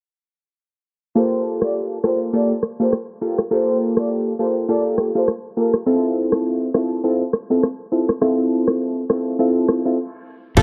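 Afrobeats at 102 BPM in 4/4, this hypnotic, smooth excerpt sits in G dorian with a lightly swung sixteenth-note feel, tuned slightly below standard pitch. From 1.2 seconds, round analog keys carry the accompaniment with a fast-attack, decaying tone of pulse and sawtooth waves, chorused and evolving under a filter sweep as the chords move from Gm9 to Fmaj7. A breathy, flute-like synth lead floats above them until 5.7 seconds, soft and sustained with vibrato, chorus and delay, sitting further back than the keys. The electronic afro-pop drum kit enters at 1.6 seconds, up front with a deep kick, rim clicks and crash cymbal, and a short break arrives at 10.0 seconds. The punchy, direct fingered electric bass lands on a single low G only at 10.6 seconds, bright and prominent. Light reverb and digital ambience give the mix a gentle sense of space, softened by a low-pass filter.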